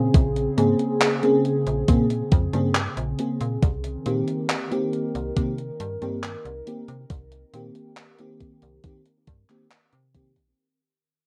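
A thumpy, overdriven electronic kick sits up front in this hazy, woozy vaporwave excerpt, which moves at a slow 69 BPM in straight 4/4, tuned slightly sharp to A4 = 441 Hz. Behind it, a gated 80s digital drum machine adds handclaps and hi-hat. Like the kick, it is sampler-style, overdriven and re-recorded in a small room, and it carries a gated reverb. A snappy FM bass with a metallic attack that decays quickly carries the low end. A lush, dreamy FM electric piano layered with a soft pad enters at 0.6 seconds, colored by analog chorus and delay. Underneath, a warbling, nostalgic tape-like pad holds sustained chords, thickened with detuned sawtooth tones, phaser, chorus and gritty 12-bit sampler character, as the harmony moves from Bbm9 to Cm7 at 3.6 seconds. The rough home-demo mix carries a cassette-tape feel and a moderate small-room ambience, and the whole clip plays as a fade-out cut from a longer piece.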